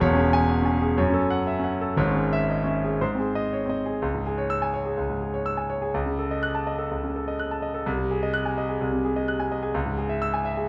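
A dark production bathes a clear, up-front concert grand in the wet reverb of a large studio, its deep bass and polished, short-sustained tone ringing through the space. This stormy, agitated classical excerpt is a virtuoso piano study in 4/4, played solo with restless rubato across a span from E1 to F#6. The music moves into a new section at 4.0 s and returns to its home chord at 9.7 s, breaking off at 10.7 s as part of a longer piece.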